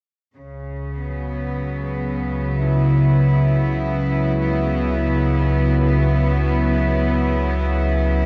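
Drifting in free time, this dark, unsettling ambient drone in C# minor sets a clear, close cello section holding soft-edged sustained chords from 0.4 s over an evolving analog drone treated with chorus and phaser and carrying a filter sweep, while a barely audible detuned synth bell adds eerie, inharmonic arpeggios from 2.6 s, all bathed in huge reverb and the warbling pitch drift of worn cassette tape in what is cut from a longer piece.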